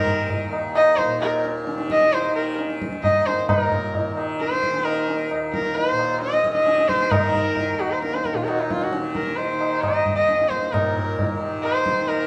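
A nasal, bowed sarangi carries the melody up front with light vibrato and gliding portamento between Eb4 and Eb5, its sympathetic strings adding a halo to a smooth top. Beneath it, a softly plucked tanpura holds a buzzing, shimmering drone, while low-tuned, ringing tabla keeps a straight 4/4 pulse at 132 BPM. Cut from a longer Hindustani classical performance, this introspective, meditative passage moves into a new section at 3.5 seconds, with the trio playing live together in a large studio room that lends a moderate reverb.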